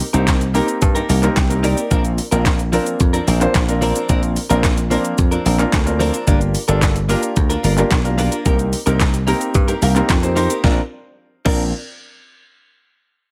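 Dance-pop in Bb major at 110 BPM, upbeat and euphoric, this excerpt opens on a drop that runs to 10.6 seconds, with a layered electronic drum kit of knocking kick, deep snare, bright hats, handclaps, shaker and crash up front, a punchy foam-muted slap bass and a deep-bodied grand piano both pumping to the sidechain, the piano adding fills at 0.3 and 9.5 seconds, and a clean, compressed direct electric guitar riff shimmering through lush chorus, all over Cm7, Bbadd9 and Gm7 in a dry, close sound.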